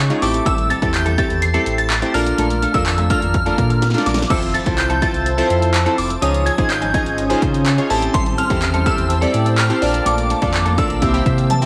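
Dance-pop at 125 BPM in a straight 4/4, this short clip from a longer piece feels carefree and summery, with a light reverb and the character of a home cassette recording. A shimmering, warbling FM bell carries the high melody through an ensemble chorus and a vintage tape tint, while a deep, full sine sub bass with an added octave pumps against the sidechain underneath. Glossy, chorused retro synth keys built from pulse and sawtooth waves sit up front with the accompaniment, and a clean, compressed electric guitar plays a fingered riff in the background through a lush chorus. The punchy analog drum machine is overdriven and prominent, with kick, snare, handclaps, hi-hat, toms and crash, and fills arrive around 3.8 seconds and again at 11.5 seconds. An ethereal, detuned pad with a slow attack joins at 4.9 seconds, adding airy sustained chords over a progression that moves from Am7 through Bbmaj7, Fmaj7 and Dbadd9 before landing on C.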